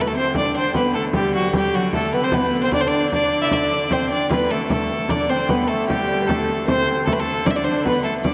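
Festive and ancient, this excerpt from a medieval dance in D mixolydian moves at 152 BPM in a straight 3/4, with a clear, focused bowed fiddle carrying the melody up front with light vibrato over a delicate fingerpicked lute with gut double strings and a rich, boxy, ringing viola da gamba sharing the second line, a nasal, earthy hurdy-gurdy holding a D drone in the background, and a close, dry frame drum played with soft hands entering at 0.3 s, all set in a wet church reverb.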